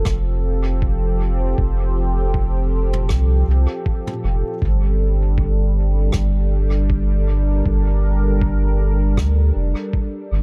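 Meditative and spacious, this ambient dub fragment at 79 BPM in G minor sways with a light 16th-note swing as a detuned sawtooth pad with chorus and a slow attack holds chords from F to Gm, over a deep, round sub bass sitting up front, a muffled, thumpy pitched-down kick, and a faint small-room brush kit whose rim clicks and toms trail off in dub echo, all set in an echo-heavy reverb.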